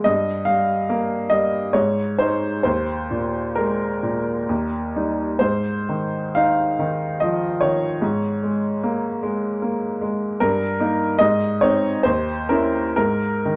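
A rubato feel in triple metre sways through this romantic classical character piece for solo piano, passionate and warm in mood. A bright, woody upright piano sits up front, its brilliant, natural tone ranging from low Eb2 to F5, while the overall production leans dark with a light reverb. The harmony drifts from Gm7 through suspended and inverted chords around the home chord before settling on open fifths near 13.0 seconds, where this short excerpt is cut from a longer piece.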